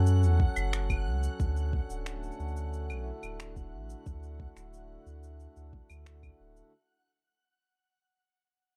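A reedy, breathing hand-pumped harmonium holds sustained chords over a deep, round sub bass and a reversed, detuned, granular swelling texture bathed in its own reverb, moving from F#m to D at 1.4 seconds, as tape-toned electronic cabasa, claves and finger snaps and a soft, up-front electronic kick drum join this wistful, delicate 90 BPM folktronica fragment, which fades out throughout within a dark digital ambience.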